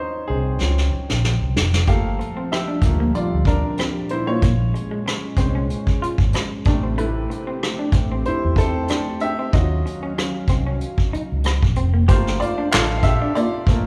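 A lightly swung 4/4 groove at 94 BPM sets this soulful, smooth neo-soul and R&B excerpt in motion, cut from a longer piece and tuned to A4 = 439 Hz. A vintage brush kit sits up front with a tight kick, medium-tuned snare, rim click, hi-hat and handclaps, its rolled-off top giving a soft, small-room feel, and it opens with a fill at 0.6 seconds. Beneath it, a dark, round, foam-muted electric bass plays punchy fingered lines low in the mix's foundation, while a bright, woody upright piano with short sustain takes the solo spotlight from the start. At 1.9 seconds a slightly broken-up, lo-fi electric guitar with tremolo adds a compressed second line, and a detuned sawtooth analog pad with chorus and a slow attack lays smooth sustained chords under the Ebm9, Gm9, Bbm9 and Am9 changes. The pad drops away at 12.1 seconds as a brief new section returns to Gm9, all of it set in a moderate recital-hall reverb.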